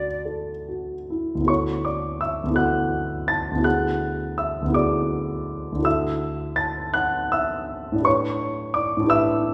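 A church-like recital hall with a wet reverb of 1.5 seconds surrounds a dark, mellow concert grand placed up front, its action noise audible, its bass deep and its short sustain intimate. This luminous, pastoral classical fragment in D major unfolds at 55 BPM in a rubato 6/8, the piano spanning D2 to A6 as accompaniment. The harmony moves from Dmaj9 through E9/D and Dadd9, reaching A11 at 8.1 seconds.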